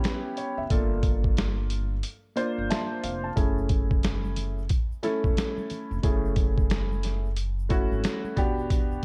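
A dark, worn grand piano with audible action noise opens this smoky, mellow jazz-hop excerpt alongside gritty, pitched-down boom bap drums with a thumpy kick, then a woody gut-string upright bass joins at 0.6 seconds, the piano plays a fill at 2.4 seconds within a brief break that begins at 2.0 seconds, and soft-handed tube shaker and congas sit in the background from 3.4 seconds.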